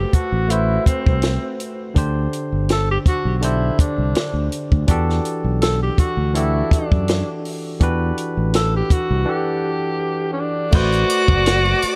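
Cinematic and silky, this cut from a 1970s-style soul piece moves at 82 BPM in A dorian with a gentle 16th-note swing, as a breathy, whispered tenor saxophone carries the melody up front with subtone, scooped notes and tape echo. A barky, lightly overdriven tine electric piano, a punchy fingered electric bass and a compact cocktail drum kit with dark cymbals and a high-tuned snare support it through a break at 9.3 seconds. At 10.7 seconds a lush bowed string section and a distant shimmering triangle join in the background, along with a very quiet, ringing vibraphone played with soft mallets.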